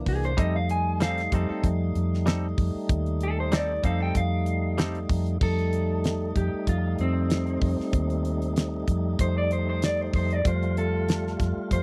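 A straight-eighth groove at 95 BPM with a light sixteenth-note swing drives this laid-back, gritty soul blues in F mixolydian, cut from a longer piece, with a damped 70s drum kit putting a fat snare and tight kick up front beside a dark, round, foam-muted fingered bass. Over a slow-rotary, lightly overdriven tonewheel organ, an electric guitar through a small old amp carries the melody with a slightly broken-up, lo-fi tone in spring reverb, while a bright, twangy, direct-recorded clean guitar adds compressed stabs from an F9 at 0.4 seconds until 5.0 seconds. The close, dry 1970s-style studio sound keeps the drums and bass forward.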